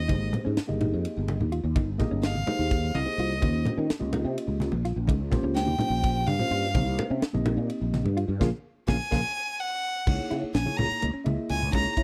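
In a driving 7/8 at 253 BPM counted in eighths, this intense electric jazz fusion excerpt puts a bright, airy-bowed violin solo with vibrato and slapback echo up front over a growly fretless bass with ensemble chorus, a mellow phased tine electric piano, dark compressed guitar stabs in the background, soft-handed low congas and a tight funk kit with a high-tuned snare, all in a dry, close 1970s-style small room, with a band accent at 8.4 seconds and a drum fill from 9.4 seconds leading to the closing C#m69 at 10.1 seconds.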